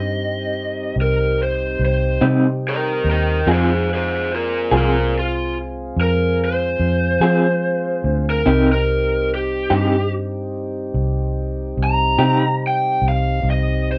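A mournful, smoky slow blues in C minor at 48 BPM in 12/8, this short cut from a longer piece is carried from start to finish by a dark, overdriven lead guitar solo through a small cranked amp, over a round, punchy foam-muted bass and a mellow tonewheel organ holding sustained chords with key click and slow rotary speaker. A second electric guitar through a small old amp, slightly broken-up and compressed with tremolo, adds accompaniment from 2.2 to 12.4 seconds as the harmony moves from Cm to Fm at 3.5 seconds and back to Cm at 8.5 seconds. The rough, lo-fi home-demo mix sits in moderate studio reverb.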